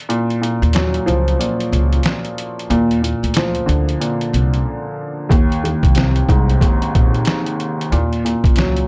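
Gritty, overdriven sampler-style drums sit up front in this dark boom-bap hip-hop excerpt at 92 BPM with a swung 16th feel: compressed and pitched down, with a thumpy kick, medium-tuned snare and hi-hat driving a break that runs to 5.3 seconds. A mellow, slightly detuned upright piano, also up front, carries the chords from Gbmaj7 through Bb and a rootless Bb9sus4 to Ebm7, its audible action noise and tape-filtered haze adding intimacy. From 0.6 seconds a pizzicato upright bass on gut strings adds a woody, thumpy low end, all within a dark, lightly reverberant mix.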